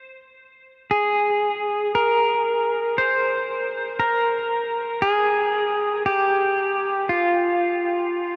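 At 0.9 seconds a lone electric pedal steel guitar emerges, bright and clean, sitting up front in a vast, wet ambient space whose reverb tail lingers for about 7.6 seconds. This short excerpt from a longer ambient piece moves at a slow 58 BPM in a straight 4/4, and its mood is melancholic yet serene. Played with fingerpicks and slide, the steel rises in volume swells and stays within a narrow register from F4 to C5. Compression keeps its tone even, while tape echo adds repeats that blur into the huge reverb. The guitar carries the whole passage alone until it stops at 8.4 seconds.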